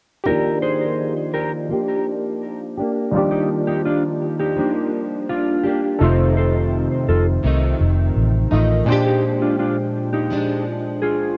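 Sawtooth analog keys open this sunny, laid-back slice of indie and bedroom pop at 0.2 s. Their round, fast-attack notes decay under chorus, a low-pass filter and a filter sweep. Almost at once a fingerpicked nylon-string guitar joins with a full-bodied, deep classical tone and fresh strings, softened by ensemble chorus, warbly pitch drift and its own low-pass filter. Alongside it, a mellow, clean electric guitar carries a second line through analog chorus and tape echo. At 6.0 s a foam-muted fingered electric bass enters, dark and punchy, and it stops at 8.8 s as a break begins, while the harmony moves from Ebmaj9 to F7 and on to Bb13. The sound is dry and close in a 1970s studio manner, with both guitars and the bass placed up front.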